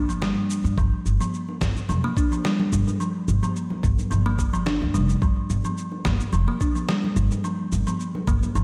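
A bright kalimba, plucked with a thumbnail and sitting up front, spins short arpeggios through delay and slapback echo in this earthy, lightly swung organic downtempo excerpt, over an acoustic pizzicato upright bass with steel strings that pumps against the sidechain, a compressed, sampler-style electronic cabasa and fat snare drum carrying their own slapback echo, a gritty, thumpy, tape-warm electronic kick drum entering at 0.8 seconds, and distant congas and bongos joining from the background at 1.2 seconds, all in a small room with light reverb.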